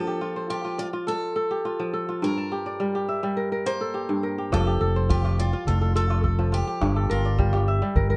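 A dark, dry production frames this hypnotic, joyful West African string and xylophone excerpt in F major at 105 BPM, where a ringing, crisp kora spins arpeggios up front beside a boxy picked steel-string acoustic guitar melody, until a punchy overdriven fingered electric bass and a deep, distant calabash join at 4.5 seconds over the shifting F and Gm chords.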